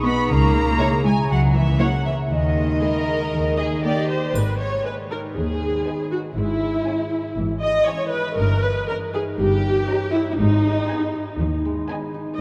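Mischievous and quirky, this whimsical cinematic cue moves at 119 BPM in G# minor, with a ringing concert harp spinning arpeggios over a lush double bass section with portamento and an intense cello section in the background. An up-front, focused viola section carries the accompaniment, a distant violin section takes the melody, and a second violin section and a hollow, mellow flute section add supporting lines, the flutes dropping out at 4.1 s. A bright triangle chimes briefly at 4.4 s, and the whole piece sits in a vast, echoing cathedral-like space with a faint mains hum beneath it.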